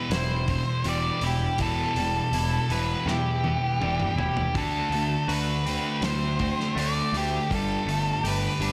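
A steady, straight 4/4 pulse at 81 BPM drives this angsty, cathartic slice of quiet-loud alternative rock in E minor, cut from a longer piece. A loose indie drum kit, muffled and lo-fi with a tight kick and a rolled-off top, works through hi-hat, kick, snare and toms, adding a fill from 3.1 to 4.6 seconds. Underneath, a punchy fuzz picked electric bass with overdrive anchors the low end, while a thick, dark fuzz guitar picks out the riff and a bright, twangy clean electric guitar spins arpeggios through analog chorus and slapback echo. Up front, an octave-fuzz lead guitar carries the melody with distortion and slapback echo. The harmony moves from Em to D7 at 4.6 seconds and lands on Gsus2 at 7.5 seconds, all set in a moderate concert hall reverb that gives the mix a big arena sound.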